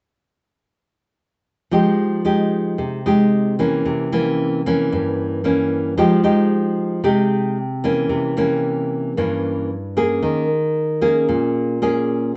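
Set in a moderately large, reverberant studio room with a soft, dulled top end, this melancholic, intimate bossa nova fragment in F minor at 113 BPM features a full-bodied, fingerpicked nylon-string guitar with a deep classical tone, placed up front and taking the solo from 1.7 to 12.3 seconds, alternating Fm9 and C7b9 before shifting to an Eb7sus4 at 10.2 seconds.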